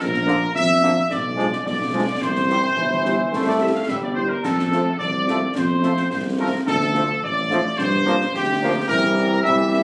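A festive, spirited military-style march for wind band opens at once with a clear trumpet section carrying the melody up front, a mellow, soft-attacked tuba on the bass line, and concert snare drum, clash cymbals with a dark edge, and concert bass drum in a live room. At 0.3 s the French horn section joins in the background with accompaniment, while a bright trombone section holds sustained chords, both sections playing tight and in classical style. The march moves at 108 BPM in a straight 2/4 in F major, with a harmony that passes from Bb through Bdim7 and C to F, then Dm, Gm7 and C7. Light vibrato colours the trumpets, horns and trombones, and the trumpets sound somewhat distant and roomy despite leading the ensemble. Captured on a phone in a large studio with moderate reverb and a club-like ambience, this 9.8-second fragment is cut from a longer piece.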